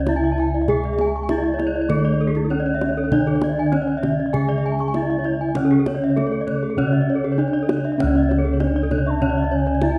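Brilliant and shimmering, this Balinese gamelan passage, cut from a longer piece, moves in a straight 4/4 under a moderate recital-hall reverb with a faint mains hum. A horn-mallet bronze metallophone carries the melody with a boxy, warm ring, while a wooden-mallet metallophone plays accompaniment in the background, two bright horn-mallet metallophones spin arpeggios above, one of them airy, and round, beating bossed gongs sit up front on the bass; all four metallophones shimmer with the beating of paired tuning. A tight, close and dry kendang supplies the percussion, and at 9.1 s a mellow, hollow bansuri with vibrato and a crisp attack enters on a second line.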